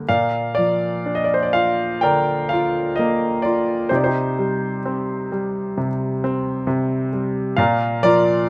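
The rhythm moves in a flexible, rubato four, stretching and yielding like a lyrical classical piano piece unfolding at a slow, unhurried pace. A solo grand piano carries the whole fragment from the opening to about 8.5 seconds, reaching from low in the bass up into the upper treble. Its tone is clear and intimate, sitting present and up front, with the soft clicks and thumps of the action audible beneath the notes. The harmony settles on a major chord, turns to a minor one at 3.9 seconds, and returns home at 7.6 seconds, giving the passage a wistful, faintly dark cast. Close, detailed miking and a nearly dry room leave every touch exposed, and the moment feels lifted from a longer work.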